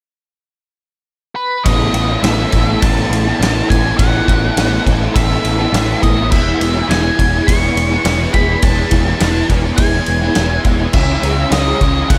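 A straight, steady 4/4 pulse carries this hazy, blissful shoegaze and dream-pop rock excerpt, cut from a longer piece. A dark, fuzzed-out lead guitar sings the melody from 1.4 seconds, its distorted octave tone trailed by digital delay, and a double-tracked, crunchy overdriven rhythm guitar joins with its riff just after, up front and shimmering with ensemble chorus. At 1.7 seconds the full band arrives as a growling picked bass, direct and amped with grit of its own, settles low beneath a loose acoustic drum kit with a punchy kick, a medium-tuned snare and dark crash and ride cymbals. The kit sits up front yet sounds roomy and distant, its top rolled off, while light reverb and small-room ambience soften the whole. The chords move from Asus2 to E and then to C#madd9 beneath the dreamy, blissful wash.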